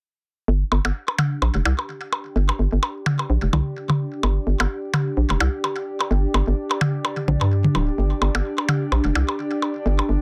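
Dense, heavily limited and lightly reverberant, this cool, sparse minimal techno excerpt at 128 BPM with a subtle 16th-note swing opens at 0.5 seconds on a hollow, bouncy FM bass with a punchy, fast-attack, decaying knock up front. It is joined at 0.7 seconds by overdriven electronic percussion blips and toms with digital delay and, from 1.2 seconds, by a mellow, nostalgic lo-fi pad of detuned square, triangle and sawtooth tones that warbles and sustains through chorus, phaser and its own reverb.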